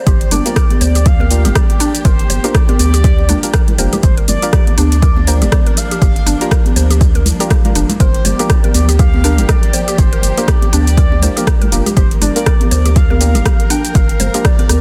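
Driving and spiritual, this afro house excerpt at 121 BPM in G minor sits on a Gm7 drop from 0.1 seconds, with a punchy, overdriven electronic kick up front and a deep house kit of metallic hats, rim click and shaker, ringing high-tuned congas in the background, a round sine sub bass pumping under sidechain, woody FM mallet-like plucks spinning arpeggios through chorus and delay, nasal chord stabs entering at 0.5 seconds, lush dark bowed strings holding chords, and a smooth sawtooth lead carrying the melody with vibrato and a moving notch, all in a dry, dense, heavily limited mix.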